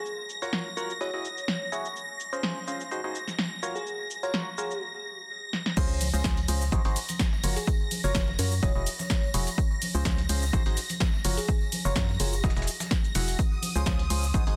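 A dense, heavily limited master with light reverb carries this joyful, euphoric piano house excerpt at 126 BPM in Db major, with a slight swing on the sixteenths. A sparkling, bell-like FM electric piano melody with chorus, cassette tape colour and dub echo floats over shimmering string-machine violin chords and a hollow, mellow organ stab riff with phaser and dub echo, while a punchy, overdriven analog drum machine drives things from the start with low-passed snare, hats, cymbals and cabasa. After a drum fill at 5.5 s, the drop at 5.8 s brings in a dark, organ-like FM bass up front, a dry, overdriven electronic kick, a gritty sampler-style soul kit with hi-hat, shaker and snare, and soft tambourine and congas in the background, with sidechain pumping on the bass, strings and stab as the chords cycle through Dbmaj7, Ab7, Gbmaj7 and Emaj9.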